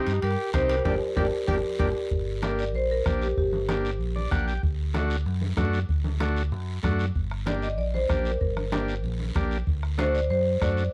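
Cumbia with a driving, passionate feel, this short excerpt from a longer piece moves in a straight 4/4 over a dark production with light reverb. A percussive, vintage-toned marimba carries the melody with plate reverb, playing at the start and returning from 7.5 seconds, while a warm trumpet with light vibrato adds a punchy second line in the background only during the opening 1.9 seconds. A reedy, clean combo organ supplies accompaniment throughout and steps forward with a transistor fill at 4.0 seconds, after the band hits an accent in the opening bars. Underneath, a round, amped fingered electric bass sits up front, joined by a close bombo with a soft beater, a raspy, dry guiro and band-limited congas struck with hard hands in the background. Ringing metal-shell timbales, distant in a large room, sound only in the first 1.9 seconds, as the harmony moves from C minor to G minor and swings between D and G minor, closing on D7.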